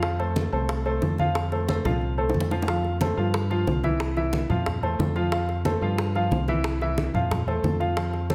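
Salsa in F major at a brisk 181 BPM, this sunny, festive snippet sets a clear, worn concert grand piano up front with short-sustained chords and a deep low end, over a dark, round fingered electric bass that sits direct and forward. Tight, high-tuned bongos struck with hard hands sound close and dry, while low-tuned congas with a thick-skinned, soft-handed tone sit in the background of a live room. A drum fill from 1.9 to 2.7 s leads into a new passage where the harmony moves between F, Cadd11 and C, all within a moderate large-studio reverb.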